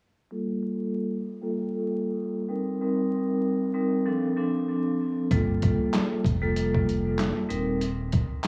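A filtered vibraphone opens this short, reflective cut from a longer boom-bap hip-hop piece, its metallic, ringing tone sitting up front with a slow motor vibrato and a boxy small-room character, trailed by dub echo. A filter sweep runs across the vibraphone from 0.3 to 5.3 seconds as the moody harmony moves from Gm9 through Eb6 to Dm7. At 5.3 seconds a sampler-style drum kit arrives, pitched down, compressed and muffled, with a thumpy kick, a medium-tuned snare, hi-hat and handclaps, all roughened by overdrive and 12-bit grit. A deep, full sub bass with an octave layer enters at the same moment, its sine-and-triangle tone sustained under the returning Gm9 and Eb6 chords, with a swung sixteenth-note feel underpinning the groove. The mix is echo-heavy with vinyl crackle and only a touch of small-room ambience, giving the whole fragment a moody, reflective character.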